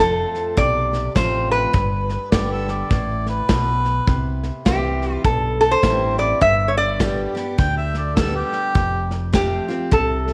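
A moderate echo-chamber reverb lends a roomy sheen to this sunny, nostalgic honky-tonk and classic country excerpt, which swings at 103 BPM in 4/4. Up front, a bright, metallic lap resonator guitar carries the melody with nasal slide tones and fingerpicks. Beneath it sit a picked, full-bodied dreadnought steel-string acoustic with audible finger squeak, a round, dark fingered electric bass, and a soft brush kit with a tight kick and rolled-off top that enters at 0.3 s; a mellow, smooth-topped harmonica adds a second line from 2.3 s to 9.2 s over chords running F, G, C, G and F.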